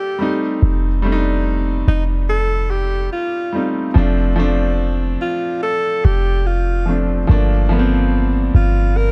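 A close-miked alto saxophone carries the melody in this short cut from a longer contemporary R&B piece, played solo in a jazz style with vibrato and scooped notes, its clear line touched by delay. The mood is sensual and late-night, unfolding at 72 BPM in straight 4/4 in G minor. An intimate grand piano supplies the accompaniment up front, its natural tone close enough that the action noise can be heard. From 0.6 seconds a deep, boomy 808-style bass joins with sine-like weight, a fast attack and a mellow, decaying tail. The harmony moves from F7 to Dm7/F before settling on Gm9 at 7.3 seconds, set in studio reverb within a dark, warm production.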